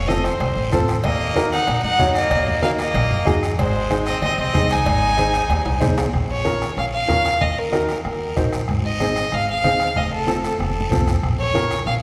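Bathed in the long, wet reverb of a church or concert hall, this fiery, danceable cumbia clip in Bb minor at 188 BPM puts a dark, smooth-topped bowed fiddle up front on the melody over plucked, woody upright bass and an intimate upright piano with audible action noise, while a soft-beater bombo sits in the background alongside low-tuned, thick-skinned congas and a raspy guiro, as ringing cowbell and timbales play until 6.1 seconds and a brilliant, growling, gritty trumpet adds a second line from 1.0 to 5.8 seconds.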